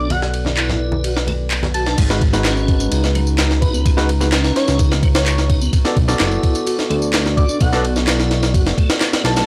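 A pitched-up, compressed sampler-style breakbeat kit sits up front, its thumpy kick and high-tuned snare thinned by high-pass filtering, while overdriven electronic handclaps and tambourine join at 0.6 seconds and soft-handed congas ring in the background until 1.7 seconds. A fat, wave-folded analog bass with tube saturation anchors this raw, gritty breaks groove beneath a moody square-and-sawtooth pad pumping with sidechain, a piping tonewheel organ riff with key click and fast rotary speaker, and an airy, dreamy lead carrying the melody through chorus, AM radio colouring and tape echo. After a filter-sweep opening, the drop lands at 2.0 seconds, and just after it a bell-like tine electric piano adds clean stabs with tape echo, heard through a dry cassette-tape hardware sound with light reverb in this excerpt cut from a longer piece.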